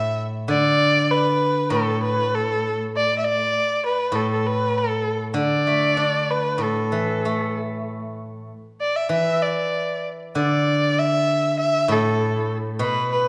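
Flowing freely in a rubato 4/4, this graceful, festive passage of Chinese traditional chamber music is cut from a longer piece. A single bowed erhu carries the melody up front for the full 13.3 seconds, its rich tone smooth and even, shaded with vibrato and portamento. A steel-string zither played with fingerpicks accompanies close by in a lower register, ringing and silvery, while a wet recital hall reverb lends the pair a spacious, resonant setting.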